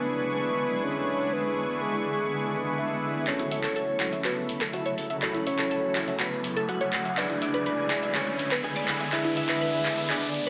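A straight pulse drives this dreamy progressive house passage, cut from a longer piece, though the layered, up-front house drum kit with its handclaps and hi-hat only arrives at 3.3 seconds, where a drum fill opens a build-up. Before then, a round, dark octave-layered synth lead carries the melody through chorus, phaser and tape echo with a touch of vibrato. Beneath it sit an ethereal, shimmering ambient pad holding sustained chords and smooth supersaw stabs that pass through a low-pass filter and tape echo. A reversed, granular texture hovers high in the background. From 3.3 seconds a mellow FM synth bell traces a very quiet second line and a filter sweep moves across the supersaw, a glassy wavetable pluck adds crystalline arpeggios from 3.4 seconds, and an electronic riser joins in the background at 5.9 seconds. The harmony moves between dominant-seventh and minor-seventh chords, and the dense, heavily limited mix sits in a lush hall reverb.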